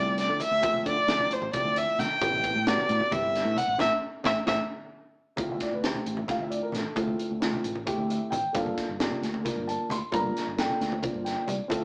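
Electric jazz fusion in a nocturnal, funky 7/8, where a nasal, bowed violin with vibrato sings up front until 4.5 s over dark, mellow grand piano, a warm fretless electric bass, a crisp drum kit with a high-tuned snare and punchy kick, and ringing low-tuned congas in the background, with a band accent and a drum fill near the midpoint and a piano fill at 11.0 s, heard as a live room take through a small speaker.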